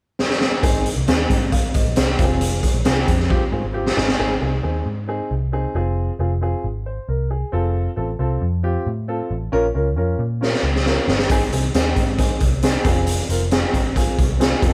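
A drum fill opens this joyful, uptempo 1960s-style soul excerpt at 135 BPM in Ab major. The raw garage kit of hi-hat, punchy kick and high-tuned snare sounds gritty and saturated, up front in a bright stone room. From 0.6 seconds a dark, round, foam-muted picked electric bass and a natural-sounding grand piano carry the harmony between Ab and Fm, later touching F and Bbm. The drums drop out at 4.2 seconds, leaving bass and piano to play on with light reverb and a live-room feel until the kit returns with another fill at 10.4 seconds.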